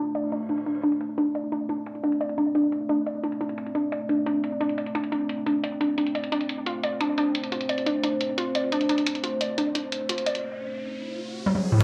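A lush digital hall reverb and a low-pass filter wrap this tense, futuristic stretch of dark technical drum and bass, cut from a longer piece. A moody analog pad sits up front with sustained chords colored by chorus, phaser and sidechain pumping. Beside it, a dusty, warbling lo-fi pluck plays mellow arpeggios through tape echo, under a filter sweep that runs throughout. The drum kit stays very quiet beneath them, its bright hats, crash and toms carrying an overdriven small-room grit, while electronic sound effects mark the edges with a reverse cymbal near the start and a riser from 10.0 s. After a brief drum fill, a knocking, overdriven kick lands up front at 11.8 s together with a snarling, detuned saw bass, growling but very quiet on D2.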